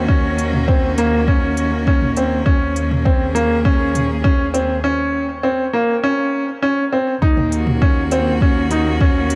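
A steady, straight 4/4 pulse comes from a deep, up-front electronic kick and a layered deep house kit with smooth hi-hats and toms, driving this intimate, cinematic slice of piano and strings electronica through a build-up that gives way to a drop at 7.2 seconds. A rich, close string quartet sustains bowed chords with vibrato, while a clear chamber double bass section holds a low bowed line with tube saturation; both parts breathe with sidechain pumping. Up front, a bright, woody upright piano repeats a riff through digital delay, set in a small room with light reverb and a dark overall production.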